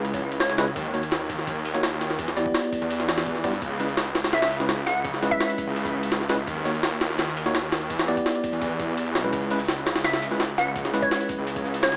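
A gritty, overdriven sampler-style jungle kit with a thumpy kick and high-tuned snare sits up front in this raw, atmospheric drum and bass cut, over a thick, menacing detuned saw bass with tube saturation, worn tine electric piano stabs trailing dub echo through minor seventh chords, a glassy, crystalline wavetable pluck melody with chorus that surfaces briefly at 0.4, 4.3 and 10.0 seconds, and a very quiet, dark breakbeat kit, all colored by vinyl crackle and a small-speaker sound.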